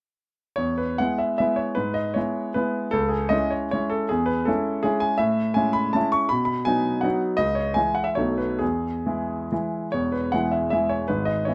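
A clear concert grand piano sits up front in a light reverb, its deep bass and smooth, slightly vintage tone coming through plainly. This is a short cut from a longer classical piece, a romantic triple-time dance in 3/4 with a proud, graceful character. The solo piano enters at 0.6 seconds and spans a broad range from the low E1 to C#6, shaping its dotted rhythms with a flexible, rubato feel. The harmony moves from E through C#m to Amaj7 and B, settling on B7 before resolving home to E. At 9.9 seconds the opening music begins again, and the piano plays until the fragment stops at 11.5 seconds.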